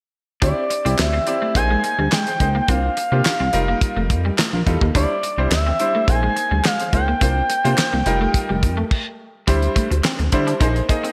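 An excerpt of slick, funky early-eighties boogie funk at 106 BPM in D phrygian opens at 0.4 seconds with a dry, fat-snared 70s drum kit and a glossy, ring-modulated synth bass up front, a bright, worn grand piano with slapback echo, a twangy, slightly broken-up guitar riff in the background, and a smooth portamento lead with vibrato and chorus carrying the melody over sus4 chords in a lush hall with a big arena sound, while very quiet crisp group handclaps join at 1.0 seconds before a stop at 8.9 seconds.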